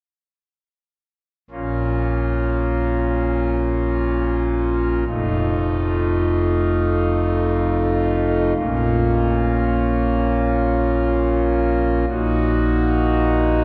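A pipe organ on foundation stops enters at 1.5 s, playing alone in a dark, solemn, chorale-style classical passage in Bb minor and free time, moving from Bbm through F7 and back to Bbm before settling on Ebm/Bb. The thick, romantic voicing spans F1 to Gb4 and sits up front, wrapped in a wet church reverb with a 3.5-second decay. This excerpt is cut from a longer piece and runs until 13.6 s.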